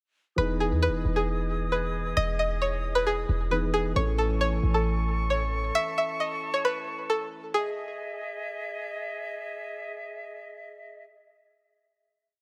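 A half-time hip hop groove at 134 BPM in 4/4 and E major carries this short, dreamy and triumphant piece, moving from Emaj7 to Amaj7 before settling back on Emaj7. Up front, a twangy, nasal string-like resonator pluck repeats a looping melody like a sampled loop, its sawtooth edge shaped by a filter sweep and coloured with chorus and tape echo until it stops at 8.8 seconds. Beneath it, a boomy 808-style bass lays long sub-bass notes with pitch slides, fast in attack and decaying, dropping out at 5.7 seconds. A dark, boxy grand piano holds open-voiced chords in a sampled-loop fashion, while a small flute group supplies an airy, vibrato-laden sustained pad with expressive tonguing. After the piano falls away at 7.5 seconds, the flutes ring on through the final chord under light studio reverb until 11.0 seconds.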